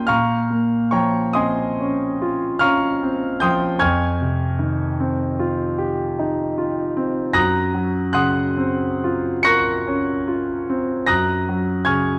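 A clear concert grand piano, up front with deep bass and a natural tone, plays alone through this mysterious, wistful excerpt of impressionist classical music in a slow, rubato 9/8 with uneven beats, its rich extended chords drifting over a dark production that sits in a moderate recital hall reverb.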